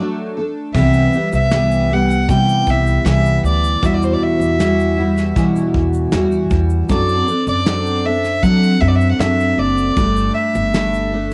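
A dry, intimate home recording on cassette frames this reflective, wistful acoustic pop fragment, which opens with a full-bodied, double-tracked jumbo steel-string guitar picking alone before woody, thumpy pizzicato upright bass and a softly brushed kit of kick, snare, shaker and crash, with its own tape coloring, arrive at 0.7 s. A moment later, at 0.8 s, a single bowed violin enters up front with a pure, floating sul tasto tone, touched by tape and analog delay yet sounding distant. The harmony drifts from a rootless Bm7 through Cmaj7, Emadd9 and D7/F# to Gsus2, lending the passage a gently unresolved, longing quality.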